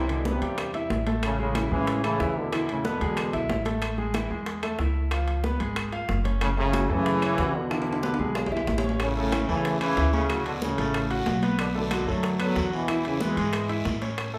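A tight, brilliant trombone section leads this joyful, sunny salsa passage up front, its light vibrato carrying the melody before pausing at 3.5 seconds and returning at 6.4. A polished, bright concert grand piano comps underneath while a thumpy, woody pizzicato upright bass drives the low end. Ringing timbales, high-tuned bongos, damped congas and woody claves fill out the percussion, with a drum fill at 7.7 seconds and then a raspy, distant guiro arriving at 9.0 seconds, all in the lively wash of a large room.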